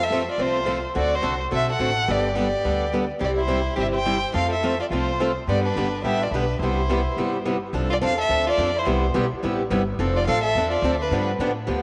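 Drenched in a wet plate reverb, this short cut from a longer jazz manouche piece swings at 212 BPM in C major, charming throughout its 11.8 seconds. Up front, a bowed violin carries the melody with vibrato, soft attacks, expressive portamento and a touch of slapback echo, while a soprano saxophone in the background adds a second line with scooped, close-miked jazz phrasing. Beneath them, a woody, thumpy pizzicato upright bass on gut strings anchors the harmony, and two picked acoustic guitars supply the accompaniment: a boxy swing-style guitar sitting forward, and a steel-string guitar with fresh strings and audible finger squeak further back.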